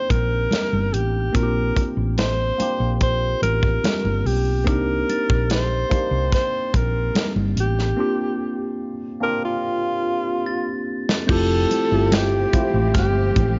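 A jazz-style alto saxophone with vibrato and scooped notes carries a romantic melody over worn, slightly out-of-tune tine electric piano through a phaser, while round, dark hollow-body bass, a punchy studio drum kit with bright cymbals and compressed, thick-skinned congas set a lush 1970s-style soul feel at 72 BPM in F major, with a bell-like glockenspiel ringing in the background from 5.1 s, a break arriving at 8.0 s and a drum fill at 9.6 s, and a bowed string section with portamento entering at 11.3 s on an Fmaj9 chord in a small-room sound.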